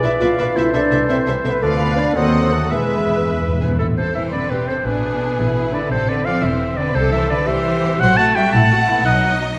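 Stormy and urgent, this classical excerpt in A minor moves in a straight 6/8 at 114 BPM, with a lush, vibrato-rich violin section carrying the melody over a second violin line, focused violas and bowed cellos and woody double basses underneath. A close-miked clarinet holds a prominent second line throughout, while a vintage-toned oboe, a pure, soft-attack flute, a background bassoon and a mellow horn section thicken the texture until 3.6 s, and a very quiet ringing harp plays arpeggios. Hard-mallet timpani on calf heads deliver an articulate fill from 2.7 to 3.8 s, and the whole ensemble sits in a wet scoring-stage reverb.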